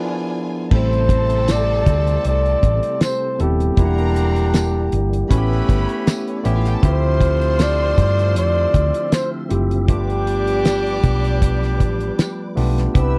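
A breathy, whispered flugelhorn carries the melody in this bittersweet, lush 1970s-style soul piece, its soft attack and dark, intimate tone sitting gently over a slow 78 BPM groove in A minor with a light sixteenth-note swing. The opening 0.7 seconds is a brief break in which a barky tine electric piano, bright and clean through a combo amp, and a distant, bowed violin section with expressive vibrato sound over an E7b9 chord. At 0.7 seconds the band enters: a damped drum kit with a fat snare, tight kick, hi-hat and crash sits up front with a rolled-off top, joined by a round, punchy hollow-body electric bass that is the loudest voice after the drums. A very quiet, percussive tonewheel organ holds mellow sustained chords with key click and fast rotary shimmer, while a clear, roomy horn section adds octave-doubled stabs. A jingly, vintage-sounding tambourine comes in at 1.5 seconds. The dry, close studio sound frames a smooth progression moving from Am7 through Em7b5 and A7 to Dm11 and G7, cut from a longer piece.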